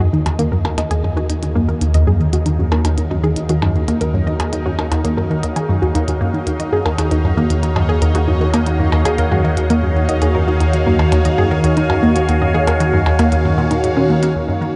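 Drenched in a huge, dark reverb, this cut from a longer piece of sequencer-driven space music feels cosmic and mysterious, with a swirling phased analog pad fading in over a mellow analog drone. A detuned unison pluck spins delayed arpeggios through a filter sweep, while a squelchy, resonant blip pluck plays a low riff. A bubbling stepped-filter texture fades in quietly, and clicky electronic hi-hats and percussion blips enter at 0.3 seconds, echoing through delay.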